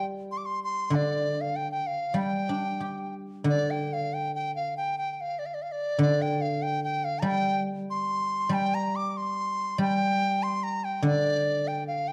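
A bright, reedy large dizi and a silvery, fingerpicked guzheng open together in this short cut from a longer Chinese traditional chamber piece, wistful and graceful in a free, rubato 2/4 around 96 BPM. The dizi carries the melody high and up front with a buzzing membrane, vibrato and tongued notes, while the ringing guzheng accompanies from below. The opening phrase gives way to a new section at 3.5 seconds, all set in a moderate recital-hall reverb with a dark, warm production.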